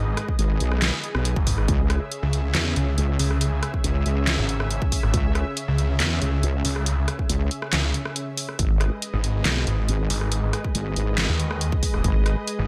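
A snarling, growling distorted saw bass and a detuned, wobbling wobble bass sit up front in this chaotic, heavy half-time dubstep excerpt, grinding over a minor chord progression that moves between G#m and C#m. A punchy electronic kick and a dubstep kit with a deep snare, handclaps, hi-hat and rim click drive the groove, both re-recorded in a large room, and a brief break arrives at 8.2 seconds. Underneath, a lush, thick unison pad holds sustained chords with a vintage, warbling chorus and sidechain pumping, all set in a digital ambience.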